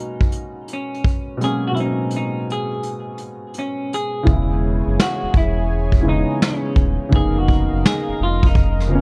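An up-front vintage brush kit with a punchy kick and rolled-off top carries this melancholic, nostalgic lo-fi hip hop fragment at 84 BPM with a 16th-note swing. Its kick drops out between 1.4 and 4.3 s, and its hi-hats drop out from 4.3 s, when a deep sine sub bass with octave and a smooth, detuned sawtooth pad with chorus arrive under a mellow felt-muted upright piano, whose action noise is audible, and a clean, picked semi-hollow guitar melody softened by tremolo and a low-pass filter, all in a dark, dry mix.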